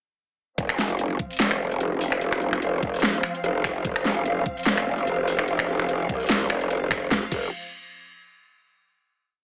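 Through a small speaker with light reverb, this menacing, chaotic heavy wobble dubstep piece drops at 0.6 seconds into a swung half-time beat of knocking electronic kick, huge snare, metallic hats, finger snaps and crash, while a growling, saturated bass with chorus and overdrive snarls up front in modulated phrases of changing wobble speed over a dark, lush bowed string section that pumps under sidechain and a low-pass filter, before a final chord arrives at 7.1 seconds.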